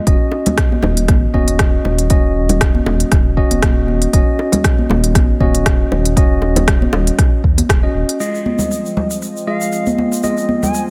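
A small, close room colors this short cut from a longer afro house track, its hypnotic, driving groove swung lightly on the sixteenths. An up-front, deep electronic kick anchors the pulse beside a tape-warm drum kit of crisp hi-hats, crash and rim click, its snare, hats, cymbals and room darkened by a low-pass filter. Ringing congas sit close, and tight, high-tuned bongos played with soft hands sit close and dry. A dark, rumbling detuned saw bass beats and pumps over an Ebm7 chord until about 8.0 seconds, and a clean tine electric piano plays filtered, delayed stabs that pump throughout. At 8.2 seconds the harmony moves to Fm7 as a smooth analog pad with chorus and tremolo slips into the background, joined by a grainy, saturated tube shaker. An airy bamboo bansuri enters at 9.5 seconds with a brief, unsteady phrase, warm with vibrato, rolled-off highs and tape echo.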